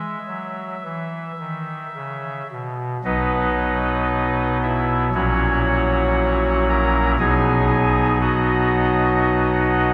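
Heard from further back in a church with a 2.6-second reverb, this reverent, serene classical chorale-style excerpt for solo pipe organ moves in a rubato 4/4 at 53-60 BPM, its soft oboe reed stop sitting up front with a baroque voicing, chiff and tremulant as the harmony settles from E major into B major at 3.0 s and passes through F#7/A# back to B.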